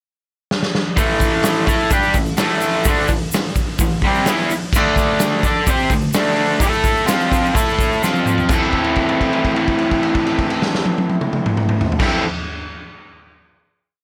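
The recording has a light reverb and a raw, swaggering garage rock feel, in A minor at 127 BPM in a straight 4/4. The acoustic drum kit sits up front with a punchy kick, a medium-tuned snare and a rolled-off, stone-room character, working crash, hi-hat and toms into a big rock groove after a short opening fill. An overdriven electric guitar, picked and double-tracked, carries a bright power-chord riff moving among A5, D5 and F5, spanning A2 up to D5. A grainy egg shaker plays close and dry in the background until 8.7 seconds. A second drum fill leads into a final A minor chord at 8.5 seconds, held until the piece ends around 12 seconds.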